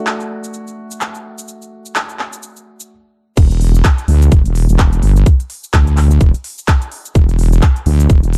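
This aggressive, swaggering bass house cut opens on short, deep-bodied grand piano stabs, pumped by sidechain and trailed by delay while a filter sweep runs over them. An overdriven big-room dance kit comes in almost at once with crisp hi-hats, handclaps, shaker and crash cymbal, its layered sound set in a large-room ambience. The piano stops at 2.9 seconds, leaving a short break before the drop lands at 3.4 seconds. There a heavy, sawtooth-and-sine wobble bass takes over with a fast attack and sustained, saturated tone, thickened by chorus and tube saturation and pumping against a tight, up-front electronic kick. The dark, dry production keeps the low end forward and in your face, with a 58% sixteenth-note swing giving the groove its strut.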